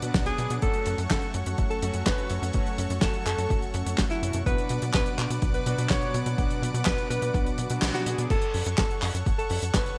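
A straight 4/4 pulse at 125 BPM drives this bittersweet, melodramatic italo disco excerpt in F# minor, built on a punchy, tape-warm electronic kick and a damped, dry 70s drum kit with a fat snare, handclaps, hi-hat and dark crash cymbals, under a tight sawtooth sequencer bass with a fast filter pluck. Over it, a breathy alto saxophone carries the melody with light vibrato and scooped notes, roughened by 12-bit sampler grit and delay, while bold, detuned synth brass stabs through tape-flavoured chorus and a lush, airy unison pad holds chorused chords between Bm and F#m. The kick drops out at 7.8 s on a band accent, the brass stops at 8.3 s as the music moves into a new section on F#m, and the bright 1980s-style digital production sits in a moderate plate reverb.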